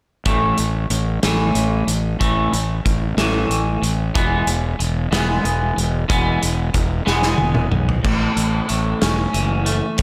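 A slow 6/8 pulse at 62 BPM in dotted quarters drives this bittersweet, restless quiet-loud alternative rock passage in A major, cut from a longer piece, where a twangy, clean, chorus-lush electric guitar picks slapback-echoed arpeggios over a growly, fuzz-overdriven fingered bass and a loose acoustic indie kit with a punchy kick, dark cymbals and a pumping room, all up front in a big arena sound with concert hall reverb, as the chords move from A5 to E at 4.2 seconds before a drum fill at 7.1 seconds leads into a new section on A at 8.0 seconds.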